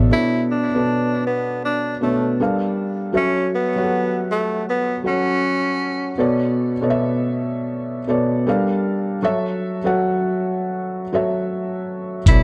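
Lo-fi hip hop with a hazy, reflective mood and a swung sixteenth-note feel, cut from a longer piece. A soft, felt-muted upright piano carries the accompaniment throughout, mellow and intimate up front, its tone colored by cassette tape, with a moderate plate reverb adding space to the mix. A tenor saxophone takes the melody as a smooth, jazz-style solo with light vibrato and tape echo, sitting close before dropping away at 6.2 seconds. The harmony moves through Bm7, Gm7 and F#m7 twice. A dark, round, foam-muted electric bass touches in only for an instant at the opening. At 12.3 seconds the sax and bass reappear briefly alongside a compressed, pitched-down sampler drum kit with a thumpy kick and hi-hat, muffled as if re-recorded in a small room.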